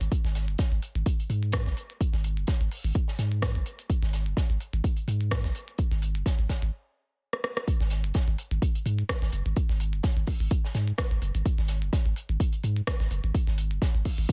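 A punchy, up-front sub bass with a pitch-drop attack and mellow sine tone drives this quirky, clinical minimal techno excerpt at 127 BPM, its sidechain pumping set against a layered electronic kick that enters at 0.1 seconds and a lightly swung 16th-note groove. Clicky hats and rim clicks from a minimal electronic kit sit above a darker, gritty breakbeat kit with a high-tuned snare, saturated and rolled-off on top, its filtered hats also pumping. The dry mix breaks into a stop at 6.7 seconds, and a brief drum fill leads into the drop at 7.7 seconds.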